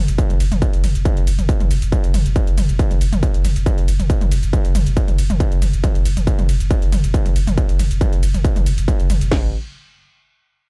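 A deep, round sine sub bass on F#1 opens this driving, intense peak-time techno drop at 138 BPM, overdriven, low-pass filtered and pumping from the sidechain, as a quieter layered electronic kit enters at 0.1 seconds with metallic hi-hats, ride, shaker and toms that also pump, and an up-front second kit lands at 0.2 seconds with a distorted kick, cracking snare and crash, in a dark digital-ambience production cut from a longer piece.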